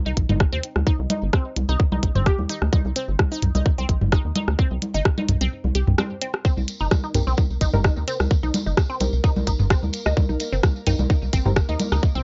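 A squelchy, resonant blip pluck riff and a rubbery square bass open this hypnotic, sparse excerpt of minimal techno in C minor at 129 BPM, with a light swing on the sixteenths. The riff runs through phaser and analog delay, and both it and the bass pump against the sidechain. A tight, layered electronic kick sits up front alongside a clicky minimal kit of hi-hat and rim click, while electronic toms and congas add tape echo. Early on, a bright, hollow square pluck flickers briefly on a single G4, wrapped in chorus and tape echo. The kick drops out between 5.5 and 6.4 seconds, after which a jingly tambourine and a faint, pulsing gated texture with built-in reverb join. From 7.1 seconds a muted, deep dub chord stab, filtered and chorused with tape echo, colours the Cm7 harmony, all captured as a dry, gritty hardware recording.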